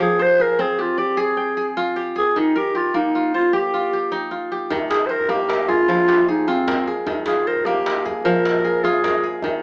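A rolling 12/8 pulse at 102 beats per minute, counted in dotted quarters, drives this short, hypnotic and flowing cut from a longer piece of West African string and xylophone music in F dorian. A fingerpicked kora sits up front from the start, its crisp, ringing arpeggios spanning Eb3 to G5 and cycling between Fm and Eb. Over it, a growling clarinet carries the solo melody between C4 and C5, with a raspy, jazz-style voice, scooped notes and vibrato. At 4.7 seconds the second section begins and a djembe joins, tight and cracking but heard distant in a large room. The band plays live in one room with moderate studio reverb, and the whole has a small-speaker character.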